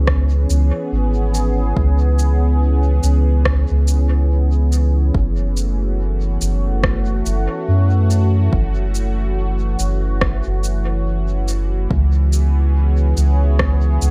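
Ambient dub in a hazy, deep mood, with a gently swung feel: a round, soft sub bass sits up front beneath a smooth, detuned sawtooth pad with chorus that holds long chords moving from C#m7 to F#m7 and back at 11.9 seconds, while a tape-warm, layered electronic kick stays in the background and an electronic rim click and shaker carry dub echo through an echo-heavy digital space.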